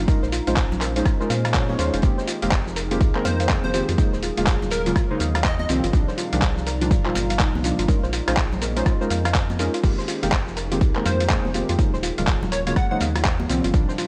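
In a lightly reverberant mix, this hypnotic, smooth deep house excerpt rides a punchy, up-front electronic kick and an overdriven, gritty dusty soul sampler-style kit of handclaps, hi-hat, rim click, shaker and crash cymbal, with a very quiet oversized low-tuned kit and bright, high-tuned congas in the background, while a dark round analog bass and sidechain-pumped deep mellow chord stabs with chorus and analog delay cycle through minor eleventh chords over soft round pluck arpeggios, a warbly, nostalgic tape-like pad, and a catchy, detuned plucky unison lead that appears at 3.3 and 11.1 seconds.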